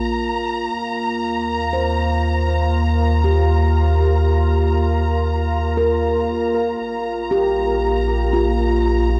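Ambient music at a slow 59 BPM in 3/4, serene and melancholic, cut from a longer piece, where handpan arpeggios ring with tape echo above a round, deep analog bass, a detuned, chorused analog drone evolving beneath, and a distant, lush violin section holding a high Bb5, all bathed in a huge dark reverb as the harmony moves from Bb5 to Eb and back to Bb5 at 6.8 seconds.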